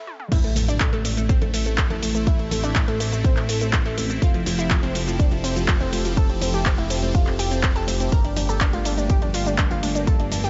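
A short overdriven fill on the deep house kit opens this bittersweet, driving progressive house excerpt at 0.1 seconds before the drop lands at 0.3 seconds, bringing in a punchy, up-front electronic kick, a fat, thick sawtooth bass and a very quiet electronic impact that lasts until 2.3 seconds. Over this, a lush, bright supersaw pad colored by phaser holds sustained chords moving from Am to Fmaj7 to Gmadd9, while a round, detuned analog pluck spins arpeggios through chorus and tape echo, both pumping with the sidechain along with the bass. The kit's crash, handclaps, hi-hat, shaker and toms are joined by very quiet, hard-hand congas, all set in a dry mix with a dulled top end.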